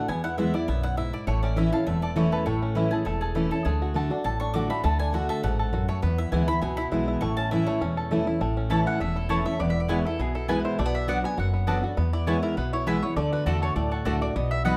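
A brisk, straight four-beat drive carries this lively, virtuosic bluegrass piece, with a twangy, percussive banjo playing the melody over a full-bodied, up-front steel-string guitar whose picked accompaniment carries a hint of finger squeak. Bright, woody mandolin stabs and a thumpy, gut-strung upright bass fill out the band. At 8.9 seconds a second mandolin takes up a melody, all within a dark production touched by light reverb.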